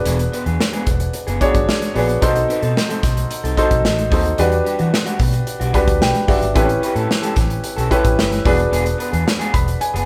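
Captured as a band playing live in one large, moderately reverberant studio room, this short excerpt of polished 1980s jazz-funk pop moves at 111 BPM in a bittersweet, nocturnal mood, with an up-front warm grand piano accompanying and adding fills at 5.5 and 9.3 seconds, a slightly broken-up, lo-fi picked electric guitar riff, a dark, round, foam-muted fingered bass, and an acoustic drum kit of punchy kick, medium-tuned snare and hi-hat, all riding a progression from E7 through B7b9, Em9 and A7 back to E7.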